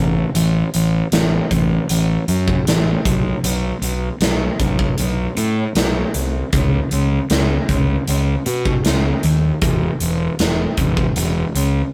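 A straight four-beat pulse drives this restless, anthemic slice of quiet-loud alternative rock, cut from a longer piece, with a big acoustic rock kit of hi-hat, punchy kick and medium-tuned snare joining at 0.3 seconds, sounding up front in a big room. A fingered electric bass carries the low end from the start, overdriven into a growly fuzz and also placed up front. The rough rehearsal-room sound has a saturated glow and a moderate studio reverb.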